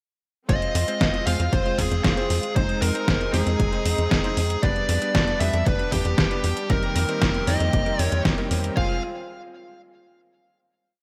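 An electronic kick drum drives a punchy, tape-tinged four-on-the-floor pulse at 116 BPM in straight 4/4, joined by a detuned 8-bit drum machine whose closed and open hi-hats and medium-tuned snare sit up front with gated reverb and small-room ambience in a disco machine beat. This short, complete italo disco piece in F minor feels bittersweet yet danceable. A tight sequencer bass pushes underneath with fast-attack sawtooth and square-wave filter plucks, octave-jumping between F1 and F2, while a clangy, vintage electric grand piano adds chorused, dotted-rhythm chord stabs from the background. A clear symphonic string section holds bowed, lightly vibrato pads with a smooth top, and a fuzz lead guitar, distorted and treated with delay, carries a picked, motif-based melody up front. The chorus cycles through Fm, Ab/F, G/F and Cm7/F before the parts drop out around 9.0 s, leaving a final Fm chord to ring out in the lush hall reverb of the bright 1980s-style digital production until 10.8 s.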